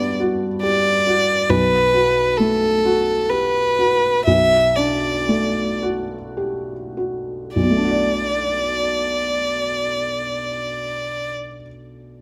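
Closely miked and lightly reverberant, this fragile, reflective excerpt of neoclassical piano and strings in B minor and 3/4 drifts at a rubato 50-70 BPM, slowing from 0.2 to 7.6 seconds, as a felt-muted upright piano lays soft, mellow, intimate Gmaj7 and Bm7 harmonies beneath a clear, focused solo bowed violin melody with vibrato that sits up front until it stops at 11.3 seconds.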